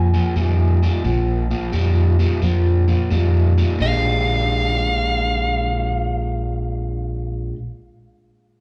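From the first second, a dark, smooth overdriven lead guitar carries the melody over a bright, crunchy rhythm guitar riff, both picked up front with slapback echo, and a round, direct fingered bass, in a rollicking yet laid-back electric blues shuffle at 87 BPM in B-flat, moving from Bb5 to Bb6 at 3.8 seconds, captured live through a club PA with a touch of club reverb in this short cut from a longer piece.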